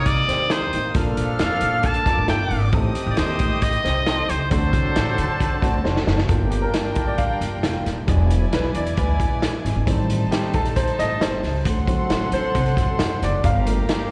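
A brilliant, forceful trumpet with scooped notes and slapback echo opens this urgent, driving 1960s-style soul excerpt in G minor at 134 BPM, backed by a smooth horn section, reedy gut-string violins, a very quiet percussive tonewheel organ with key click and slow rotary, a woody, thumpy pizzicato upright bass and a muffled, punchy vintage drum kit, until a drum fill at 5.9 seconds hands the spotlight to a warm, long-sustaining upright piano solo from 6.3 seconds, all heard as a live gig through the venue's PA with recital hall reverb.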